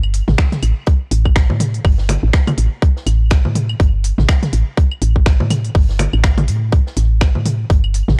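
Minimal techno at 123 BPM with a 16th-note swing, clinical and sparse, where a tight, up-front electronic kick sits alongside a woody, round FM bass with a fast attack and dark decay that pumps with sidechain compression, while layered electronic claves, toms and bongos trail an analog delay, a clicky kit adds finger snaps and hi-hat, and a very quiet acoustic big-band kit with a medium-tuned snare sits far back, all captured in a dry, gritty small room with a cassette-tape grain in this short cut from a longer piece.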